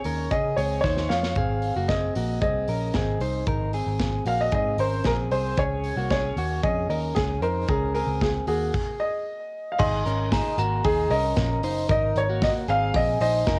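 A clear, woody upright piano sits up front and carries the melody in this breezy, bright stretch of jangly indie pop, cut from a longer piece and moving at 114 BPM in a straight 4/4 in Ab mixolydian. Its slightly detuned, worn tone carries a cassette tape color. Beneath it, a clean, direct-recorded electric guitar picks compressed arpeggios with spring reverb and tape echo, while a dark, foam-muted picked bass gives a round, amped low end. A modern studio kit with a punchy kick, medium-tuned snare, hi-hat and crash sounds mid-forward with a rolled-off top; it plays a fill at 0.8 seconds, and the band stops from 8.7 to 9.8 seconds. At 9.8 seconds a glockenspiel struck with brass mallets enters on a sparkling, bell-like second line, ringing and airy through tape echo as the chords, having passed through Dbadd9, Abadd9 and Dbsus2, settle on Absus2. The whole has the light reverb and homespun feel of a home recording on cassette.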